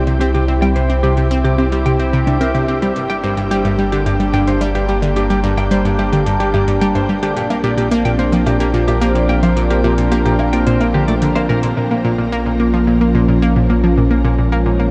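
Ambient, sequencer-driven space music at 109 BPM in straight 4/4, expansive and mysterious, with a sweeping, resonant pad holding sustained chords under chorus and phaser while a bright, clean semi-hollow electric guitar picks arpeggios through tape echo. An up-front analog pluck with a ring-modulated, detuned edge and a filter sweep plays a riff with chorus and tape echo, a round sine sub bass anchors the low end, and metallic electronic hi-hat and woodblock sit in the background, fading in until they drop out at 11.7 seconds. The dark production is bathed in a long shimmer reverb, and the harmony moves from C through Gm and Bbadd9 before settling into Bb minor at 11.8 seconds in this cut from a longer piece.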